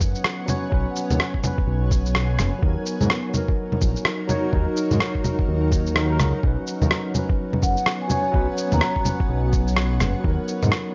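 Future garage at 126 BPM in 4/4, with a 61% swing on the sixteenths giving the groove a loose, shuffling lilt, this nocturnal, wistful passage is cut from a longer piece and moves between Bsus2 and Ebm. A compressed, muffled kick with a thumpy, tape-warm character sits up front alongside pitched-down shaker, rim click and bongos, both carrying studio reverb. Beneath them a dark detuned saw bass rumbles deep with a beating, mellow tone, pumping through sidechain compression. A clean tine electric piano plays the accompaniment through delay and pumping, while a cloudy, evolving granular pad holds blurred, full-bodied chords with a slow attack, long release and its own reverb. At 7.6 seconds a soft-mallet vibraphone with its motor off offers a brief, ringing metallic phrase in a boxy small room, trailed by digital delay, before falling away at 9.1 seconds. Vinyl crackle, light reverb and a dulled top end wrap the whole in a hazy, late-night sheen.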